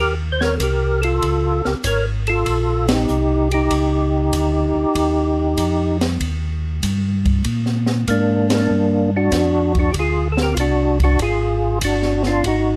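Soul jazz organ trio at 96 BPM in a swung 4/4, soulful and bluesy, cut from a longer piece and moving from Eb9 to Bb9 at 7.4 seconds. A fat, percussive tonewheel organ carries the melody up front with key click, third-harmonic percussion, chorus vibrato and a slow rotary speaker, while a second, round and dark tonewheel organ holds down the bass with the same slow rotary and chorus vibrato. An acoustic jazz kit with a high-tuned snare, boomy kick, hi-hat and ride enters at 0.4 seconds, and the band hits accents together at 2.8 and 8.4 seconds in a light reverb marked by lossy compression artefacts.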